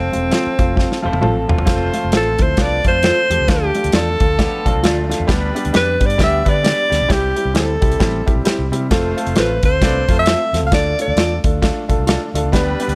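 Light reverb and a small-room ambience frame this short cut from an uptempo, danceable 1960s-style soul piece at 133 BPM in swung 4/4, where an up-front alto saxophone with scooped notes and light vibrato carries the melody over a woody upright piano, a round, foam-muted fingered electric bass and a dry, tight drum kit that plays a fill at 0.8 seconds, while a dark electric guitar with lush chorus adds stabs, a slightly broken-up, lo-fi guitar plays a riff until 5.3 seconds, a smooth-topped horn section takes a second line from 1.7 seconds, and the piano adds a fill near the close over chords moving from F through Dm, G/D and C.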